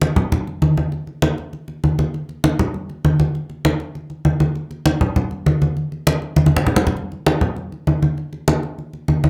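Congas open this fiery, driving Latin passage alone and up front, their low-tuned, thin-skinned heads sounding bright under soft hands in a straight four-beat feel. A drum fill at 6.4 seconds carries the music into a new section at 7.0 seconds, and the excerpt is cut from a longer piece. Close, detailed miking captures the acoustic drums in a small room with a moderate touch of reverb.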